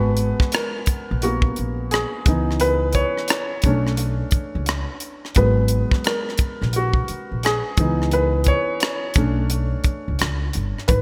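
A warm grand piano and a woody upright bass open this introspective, sultry neo-soul and R&B excerpt, with a tight funk drum kit of hi-hat, kick and rim click joining at 0.2 s. The groove sits at 87 BPM in 4/4 with a 63% swing on the sixteenths, in G# minor and tuned to A4 = 444 Hz. The natural-sounding piano carries the spotlight as a solo throughout, its short-sustain chords moving through G#m9, C#m9 and Bm9 twice over the 11 seconds. Underneath, the pizzicato bass is dark and thumpy on steel strings, while the dry kit pairs a tight kick with gated reverb on the drums. A moderate plate reverb and a bright 1980s-style digital production frame all three parts, which sit up front in the mix.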